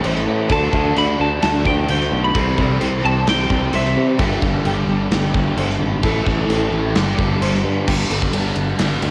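A dry home cassette recording captures this dreamy, wistful stretch of shoegaze-leaning dream pop rock, moving at 130 BPM in G major with a gated 80s drum kit up front, its polished snare and tight kick set in a stone-room ambience, beside a growly, direct fingered electric bass. Three guitar riffs sit behind them: a biting, double-tracked overdriven guitar with phaser, a thick, dark fuzz guitar thickened by ensemble chorus, and a very quiet hollow-body semi-hollow guitar, while a woody, boxy fingerpicked twelve-string acoustic shimmers through lush chorus and analog delay. From 0.5 to 4.1 seconds a clean, twangy twelve-string electric guitar carries a compressed, bright melody with tape-worn delay, as chords drift from Am7 through Cmaj7 and G to a closing Gmaj7 at 7.9 seconds.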